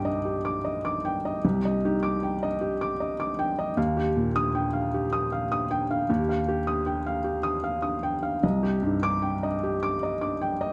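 A slow, rubato 6/8 at 51 BPM in dotted quarters gives this brief, wistful neoclassical minimalist piano excerpt in C minor its unhurried, breathing pulse, as a felt-muted upright piano plays alone from C2 to Eb6, moving from Cmadd9 to Ebadd9 at 3.8 seconds and back to Cmadd9 at 8.4 seconds. The piano sits up front, its thin felt lending a soft, mellow, somewhat boxy tone, with audible action noise adding intimacy. Close, detailed microphones capture it within a moderate recital-hall reverb.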